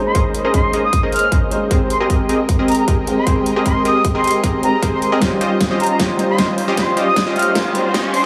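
Future bass in a half-time feel, playful and bright, this brief cut from a longer piece builds throughout as a punchy, detuned supersaw stab riff and an airy jazz flute melody with vibrato, chiff and tape echo both pump against the sidechain under a low-pass filter, over a soft felt-muted upright piano with audible action noise and a very quiet, bowed studio string section holding sustained chords. An up-front electronic kick and a big-room kit with a huge snare and metallic hats drive the groove, with a drum fill from 5.2 seconds and a background riser entering at 6.4 seconds. The harmony moves through Bbm11, Abmaj9 and Dbmaj9#11, all set in a lush hall reverb.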